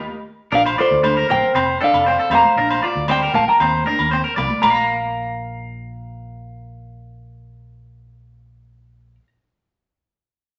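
A clean, fingered semi-hollow guitar carries the melody up front in this carefree highlife guitar band excerpt, entering after a brief band accent alongside a twangy, slightly broken-up picked guitar playing arpeggios, a bright, compressed semi-hollow accompaniment part and a round, punchy fingered bass. Ringing agogo bells join moments later, followed by thick-skinned congas, both in the background. The accompaniment guitar and percussion stop around 4.8 s to leave the lead guitars and bass in a wet, dull-topped reverb.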